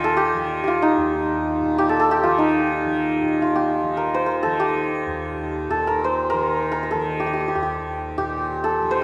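Meditative and serene, this brief passage from a longer Hindustani classical performance places a hammered, ringing santur up front on the melody over a softly plucked, buzzing tanpura drone, both carried by the lingering reverb of a recital hall.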